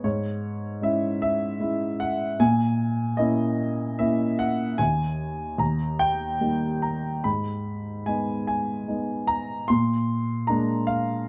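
A dark, mellow baby grand piano plays alone and up front in this short classical excerpt, a lyrical solo in G# minor at 75 BPM in 3/4 with a rubato feel. Its long sustain blooms in a moderate small-room ambience, spanning D#2 to B#5 as the harmony moves from C#m/G# through A#dim, D# and G#m to A#7 by 9.7 seconds. The mood is dark and wistful, and the passage is cut from a longer piece.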